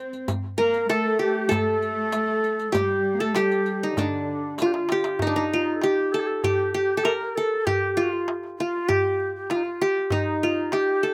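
A straight 4/4 pulse from a crisp, deep metal-shell darbuka and a soft-handed riq with dark jingles carries this longing, melancholic Arabic maqam ensemble fragment, where an up-front, bright-edged, plectrum-plucked qanun leads the melody over a breathy, reedy ney with vibrato and an intimate sul tasto cello section that drops away at 4.8 seconds, as a drum fill from 4.6 seconds ushers in a new section at 5.2 seconds, all heard close and dry in an open-air setting.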